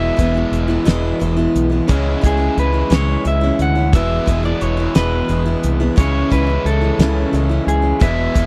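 A dark, round fingered bass, a boxy parlour-style picked acoustic guitar with finger squeak, a double-tracked overdriven garage guitar riff, and a twangy, slightly broken-up electric guitar melody through a small old amp open this hopeful, open-road folk rock and heartland rock excerpt in 6/8, joined at 0.2 s by a damped 1970s drum kit with a fat snare and tight kick that sits up front, as the harmony moves between E and C#m in a dry, close 1970s-style studio sound.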